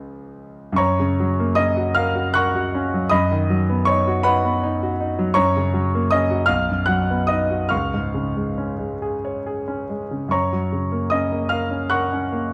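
In a 6/8 pulse, the dotted-quarter beat drifts between 41 and 54 BPM, stretched and relaxed by a generous rubato. This romantic nocturne for solo piano is dreamy and serene, sitting in F# major and spanning from B1 up to F#6. The concert grand sounds clear and natural, placed up front, with a deep bass that anchors the harmony. The passage opens on a C# chord and settles onto F# at 0.8 seconds, then moves gently through B and C# before returning home to F# at 10.3 seconds. A moderate recital hall reverb gives the notes a soft halo, and the music breaks off at 12.5 seconds as a fragment of a longer piece.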